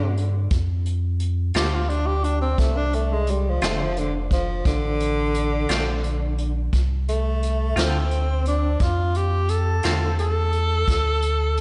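A soulful, smoky slow blues in D minor at 58 BPM in 12/8 opens on a breathy tenor saxophone soloing with vibrato and scooped notes through slapback echo over a deep, round sub bass and a Dm7 chord, joined at 0.2 s by a distant, roomy brush drum kit with a punchy kick and a clean, hollow-bodied electric guitar with tremolo that comes in at 1.5 s and drops out at 10.1 s, all set in a recital hall reverb with a big arena sound and a rolled-off top, cut from a longer piece.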